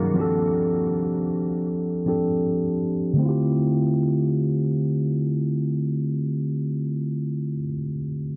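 Moody and late-night, this short R&B fragment, cut from a longer piece, moves at 79 BPM in 4/4 with a light sixteenth-note swing, set in D minor and tuned slightly flat to A4 = 439 Hz. A lone mellow tine electric piano carries the accompaniment from 0.0 to 8.4 s, sitting between D3 and A#4, clean and up front with a subtle chorus and a low-pass filter shaping its tone. A filter sweep runs across the electric piano through the opening 3.2 seconds, while it voices an F6 chord from 0.2 s. At 3.2 s the harmony settles onto a Dm11, marking the start of a second passage that carries the mood forward. The sound is dry and direct, with little reverb, and the modern master is dense and heavily limited.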